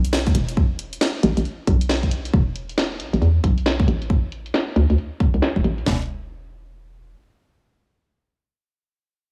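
UK garage in a skippy, soulful two-step vein, this excerpt moves at 136 BPM with a swung sixteenth feel. A hollow, bouncy FM bass with a fast attack and mellow decay sits up front from the start, alongside a filtered layer of warm hi-hats and snare, while a second drum layer with a punchy kick, cracking snare and toms joins at 0.3 seconds. A filter sweep runs over the drums until 5.9 seconds, and the whole sits in a small, digital room ambience with light reverb.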